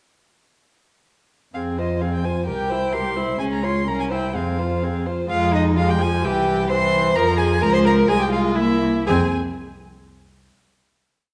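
Stormy and restless, this brief, complete classical-period movement for string quartet moves quickly at 128 BPM in 2/4 in F minor, its phrase stated twice before settling on a final chord at 9.1 seconds. The first violin carries a smooth, even melody high above while the second violin, with expressive portamento, plays a rocking two-note figure and doubles the tune at the octave, and the focused, distant viola adds its own rocking figure, chords in the rhythm of the tune and sustained chords. Beneath them a dark, woody cello holds up-front sustained bass notes, all set in a wet recital hall with a dark production.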